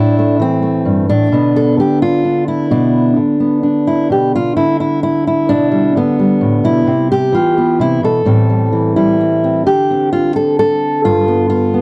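A dry, close recording with a 1970s studio feel places a lone fingerpicked steel-string acoustic guitar up front, its dark tone carrying audible finger squeak across a range from G2 to A4. This haunting, reflective folk fragment, cut from a longer piece, moves in a straight 3/4 at 130 BPM, with the guitar tuned slightly below concert pitch. The chords drift from Am through Bdim, G/B, Cmaj7 and Am7 before a shift at 9.7 seconds brings D5 and G7 to close out the 11.8 seconds.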